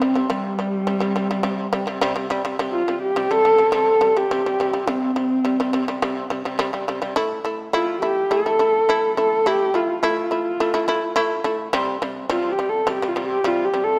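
A moderate scoring-stage reverb gives this short cut from a longer piece a roomy, resonant setting, with both instruments placed up front. It is Mongolian traditional music at 105 BPM in a straight 4/4, proud in mood with a galloping character. A single dark, husky horsehead fiddle carries the melody on bowed horsehair strings, its woody tone shaded by light vibrato and portamento. Beneath it, an acoustic, fretless shamisen plays plectrum-plucked arpeggios with a percussive, buzzing edge. The harmony rests on C5, moves to A5 as a second section begins at 7.2 seconds, and returns to C5 at 11.7 seconds.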